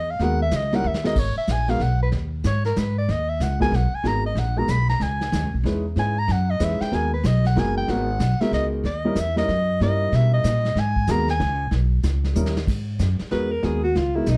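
Swung eighths drive this cool, smoky jazz waltz in 3/4, a short cut from a longer small-group swing and bop piece with a dark, lightly reverberant sound. A breathy, whispered soprano saxophone carries the melody up front with vibrato, subtone and scooped notes until 11.7 seconds. Beneath it are a woody, thumpy pizzicato upright bass, an intimate upright piano with audible action noise, and a vintage brush kit in a small, pumping room with a tight kick, a rolled-off top and brief fills, before a clear alto saxophone enters as soloist with a soft attack at 13.3 seconds.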